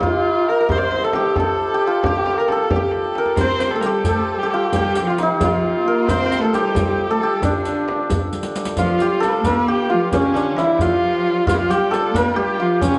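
Soulful and longing, this short cut from a longer Persian modal ensemble piece moves at 89 BPM in a straight 6/8, counted in dotted quarters. A bright, shimmering hammered santur carries the melody up front, its ringing tone leading the mix, while a clear, nasal kamancheh traces a second line with vibrato and portamento, its single bowed voice focused and a little boxy. A deep, large frame drum struck with hard hands and a tombak played with soft hands, both heard in a live room, drive the pulse from the start, and a drum fill leads into 3.4 s. There a lush, close cello section adds a rich lower bowed line with vibrato, and a riq joins with dark jingles, close and dry, sitting quietly in the background. The whole ensemble is heard from further back in the room through a wet studio reverb with a rolled-off top end, and a second fill marks the turn to a new section at 8.8 s.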